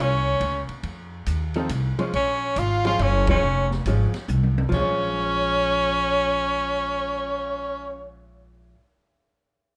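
A swinging 3/4 lilt at 139 BPM drives this moody small-group jazz fragment in Bb minor, cut from a longer piece of swing and bop. An edgy, forceful tenor saxophone carries the melody up front with vibrato and scooped notes, while a clear alto saxophone sits in the background on a higher second line, both horns playing in a punchy jazz style. A hollow-body archtop guitar, clean, picked and compressed, supplies the accompaniment, and a woody, growly upright bass played pizzicato on steel strings sits up front beneath them. The acoustic drum kit, entering at 0.4 seconds, brings a natural studio-room sound with dark cymbals, a high-tuned snare and a boomy kick. The band hits an accent at 3.2 seconds, and a drum fill at 4.3 seconds leads into a second section, all framed by light reverb.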